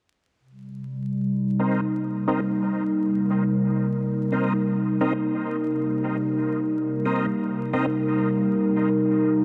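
Drenched in a huge reverb within a dark, warm production with vinyl crackle, this hazy, meditative ambient fragment at 88 BPM in C minor rests on a single Cm7 chord, as a warbling, detuned tape-like pad holds sustained chords up front from 0.7 seconds while a bright, lightly overdriven tonewheel organ with slow rotary speaker, chorus vibrato, key click and dub echo adds stabs from 1.6 to 7.9 seconds.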